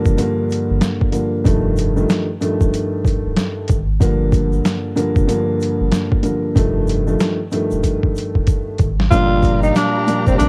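A gritty home-cassette sound with small-room ambience frames this tough boom-bap hip-hop excerpt in G minor at 94 BPM, swung on the 16ths, where a dark, boxy grand piano up front alternates Gm7 and F9 over a round sine sub bass and a pitched-down, overdriven sampler-style drum kit with a thumpy kick, medium-tuned snare and hi-hat, while a grainy tube shaker sits in the background. A drum fill at 7.8 seconds leads into a new section at 9.1 seconds, where a raspy, growling tenor saxophone enters up front with breathy subtone, vibrato and scooped jazz-style notes. At the same moment a lush, distant bowed string section adds sustained chords.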